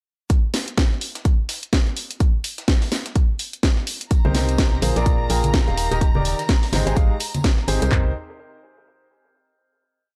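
Soulful and bittersweet, this short piano house piece in C minor moves at 126 BPM in 4/4 with a swung sixteenth-note feel. From 0.3 seconds, two layered house drum kits set the groove up front: a punchy four-on-the-floor kick with claps and floor tom, plus programmed closed and open hats with a cracking snare on the backbeat, both tape-warm and re-recorded in a small room. Underneath sits a very quiet, pitched-up breakbeat loop with a high-tuned snare and sampler-style edits. At 4.1 seconds the chords arrive, moving through Cm7, Bb7, Ebmaj7 and Abmaj7. A clear, woody upright piano plays a rhythmic riff in close voicing with analog delay, over a hollow, organ-like FM bass tied to the chord rhythm, while a dark chamber violin section holds a bowed high note with vibrato; the piano, bass and violins all pump with the sidechain, and bright tambourine and hand-struck congas sit in the background. 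The dry, gritty hardware sound with transformer saturation gives the groove its edge before it settles on a final Cm7 at 7.9 seconds.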